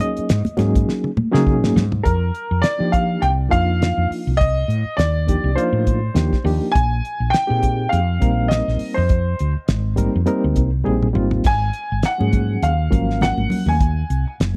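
A sixteenth-note swing at 102 BPM in 4/4 drives this slick, funky electric jazz fusion fragment, with a damped 1970s drum kit up front: a fat snare, tight kick, hi-hat, splash cymbal and toms, with fills marking the turns. High-tuned congas played with soft hands sit in the background at the start, drop out at 1.9 seconds and return at 12.2 seconds. A woody fretless electric bass, round and punchy with a hollow-body tone, anchors the low end, while a barky, reedy electric piano comps through its built-in speakers with a fast tremolo. From 2.0 seconds a clear, worn baby grand piano carries the melody with long sustain and a touch of tape echo. The harmony moves through lush suspended chords, from Ab9sus4 to F13sus4, Bb13sus4 and Ab13sus4, in a dry, close small-room sound typical of a 1970s studio.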